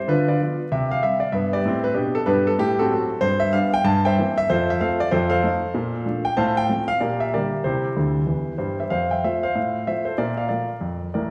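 A solo concert grand piano opens this swinging, exuberant stride jazz fragment, cut from a longer piece and moving at a brisk 190 BPM in 4/4 with a moderate swing on the eighth notes. The piano sits up front with a deep bass and an intimate, natural character, and the mechanical action noise of the instrument is clearly audible. The harmony opens on diminished chords before settling into F major at 3.9 s, passing through F7, Bbmaj7 and Gm/Bb on the way to C. A short piano fill at 8.0 s leads into a new passage at 8.9 s that returns to F and moves toward Bbmaj7. The playing ranges from A1 to A5, tuned slightly high to A4 = 441 Hz. A church-like hall reverb with a long 1.4-second tail surrounds the instrument, and a layer of vinyl crackle gives the sound an aged quality.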